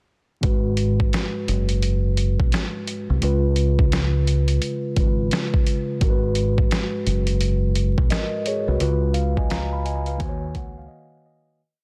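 A deep, round fingered electric bass sits up front in this gritty, dark boom-bap hip-hop piece, playing a looped line in its low register with chromatic approach notes. The sampler-style drum kit is compressed and pitched down, pairing a thumpy kick with a medium-tuned backbeat snare and hi-hat at 86 BPM, swung on the sixteenths. A mellow tine electric piano holds spread-voiced chords, adding grace notes and short fills and repeating like a sampled loop, its clean tone coloured by cassette tape and filtering. The harmony moves between G#m7 and C#7 in G# dorian before reaching D#m7 near the close. The music fades out from 8.8 seconds, and the electric piano fills alone in a brief break after the bass and drums drop away around 10.9 seconds. The mix is dry, dense and heavily limited, with vinyl crackle underneath.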